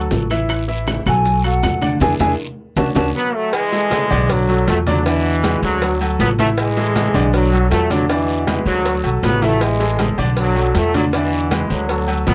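Salsa with a joyful, festive lift, cut from a longer piece and built on a lively four-beat groove that cycles through a recurring chord progression. A clear, polished grand piano comps throughout with audible action noise, while an up-front upright bass is plucked with a woody, growly, thumpy tone. The percussion sits in the background: round bongos and cowbell, low-tuned congas heard distantly in a large room, ringing timbales and agogo bells with a compressed, saturated edge, a raspy guiro and grainy maracas. A hollow, pure silver concert flute with vibrato and a crisp attack carries a brief melody from 1.1 to 3.1 seconds, and a band accent and drum fill close that opening phrase. From 3.2 seconds a punchy, vintage trombone section takes over the melody up front, playing with light vibrato and a loose, pop-style feel. The mix is dry and close, with a light reverb and a 1970s studio character.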